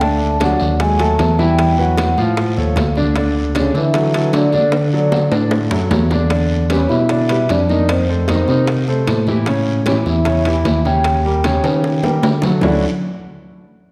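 A straight 4/4 groove at 152 BPM drives this lively, sunny Afro-Cuban jazz excerpt in D major, with congas, bongos, timbales and guiro forming a percussion bed punctuated by drum fills at 4.7 and 11.6 seconds. The congas ring high and distant, as if in a large room, while the tight, high-tuned bongos sit close and dry, the metal-shelled timbales ring quietly in the background, and the raspy guiro adds texture from a smaller space. Carrying the melody, a vibraphone with soft mallets sounds mellow and vintage, its slow motor vibrato giving a gentle shimmer. A bucket-muted trombone plays a veiled second line with vibrato and scooped notes, set back and roomy behind the vibes. A clear concert grand piano supplies accompaniment with deep bass and a natural tone, and a bell-like tine electric piano, bright and up front, takes the bass role. The chords move through colourful changes such as D#dim, Aaug, F7 and Eb7 before settling on Dmaj9 at 12.6 seconds, all within a dark production and a moderate scoring-stage reverb.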